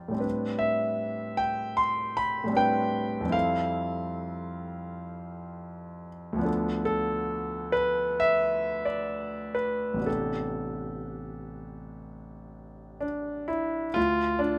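A clear, intimate grand piano carries this short excerpt of impressionist solo classical music alone, close and up front, with audible action noise and a light reverb around it. In A minor and tuned slightly low, it moves at a rubato pace of roughly 58-82 BPM through lush extended harmonies, Am11, Fmaj9 and Dm6, before returning to Am11 and settling on Dm at 14.0 seconds. The mood is nocturnal and wistful, spanning the keyboard from deep bass to high treble before breaking off at 14.6 seconds.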